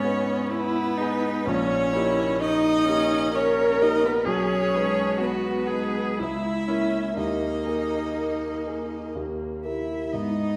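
Melancholic and yearning, this slow romantic movement for piano quartet unfolds in triple metre with uneven, rubato beats. This is a passage lifted from a longer piece. A clear, focused violin carries the melody in a close voice with vibrato, while a smooth, even cello sings a second line beneath it. The viola adds a rich, focused accompaniment with its own vibrato, and a dark, mellow baby grand piano sits up front, its vintage tone and long sustain grounding the texture from the low bass upward. All four parts play together from the opening through to 10.6 seconds, the harmony moving from G#m through D#7/A# and A#dim/C# to a suspended D# chord that resolves near the close. A wet recital hall reverb places the ensemble further back in the room, giving the strings and piano a spacious halo.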